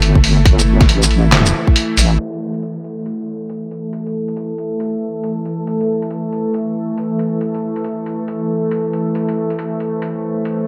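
This deep dubstep excerpt in A minor moves at 138 BPM with a half-time, swung feel, and its mood is dark and cavernous. It opens on a drop where a deep, soft wobble bass, a square-and-sine tone with chorus and a fast attack, sits up front beside a tight, layered electronic kick that stops at 1.7 seconds. The bass drops out at 2.2 seconds, and a filter sweep then works across the bowed-like drone. That drone holds tense, string-like sustained chords built from detuned sawtooth unison with a noise layer, slow attack, vibrato and its own reverb. A gritty, pitched-down, sampler-style trip hop kit runs throughout with crash cymbal, handclaps, hi-hat, shaker and a medium-tuned snare, compressed and carrying the air of a large room. The mix is bathed in a moderate echo chamber reverb and a low-pass filter, giving the piece a shadowy, subterranean depth.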